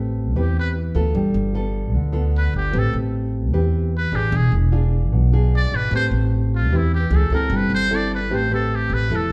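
Fingerpicked nylon-string guitar and a plucked upright bass open this smooth, wistful bossa nova in A minor, with a muted trumpet entering at 0.4 seconds to carry the melody through the rest of this short passage from a longer piece. The tempo is 151 BPM in a straight 4/4, and the harmony moves through Am9, G9 and E7b9, with a brief turn through C#6 and C6/G before settling back on Am9. The trumpet, played jazz style with a metal mute, has a buzzy, thin yet brilliant tone, with soft attacks, scooped notes and light vibrato. Beneath it the bass sounds woody and thumpy, while the guitar is full-bodied, with the deep, fresh-stringed character of a classical instrument. All three sit up front, captured live in one room with a lush large-studio reverb that adds a spacious tail.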